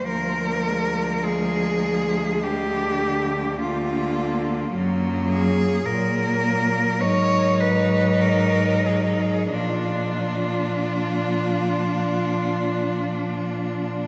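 Solemn and yearning, this short classical passage for cello ensemble unfolds in a slow, rubato 4/4 at roughly 43-54 BPM, cut from a longer piece. A rich, close cello carries the melody up front with smooth vibrato, while a clear cello sings a second line, another rich cello supplies accompaniment, and a focused cello anchors the bass, all four bowed and sounding together from 0.0 to 14.1 seconds. A vast, echoing cathedral reverb surrounds the ensemble as the harmony moves from Bb7/D through Gb and Ab5 to arrive at Bb.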